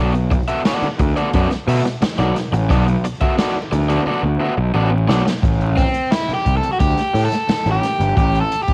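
An overdriven, compressed electric guitar plays accompaniment over a dark, round, punchy fuzz bass to open this funky, driving fragment of a longer piece, joined a moment later by an airy, polished big-band drum kit with a medium-tuned snare, with guitar and drums both colored by cassette tape, before a drum fill at 4.1 seconds precedes a guitar solo from 5.4 seconds as the harmony moves from Bm7 to Am7, set in a small-room home recording on cassette flecked with vinyl crackle.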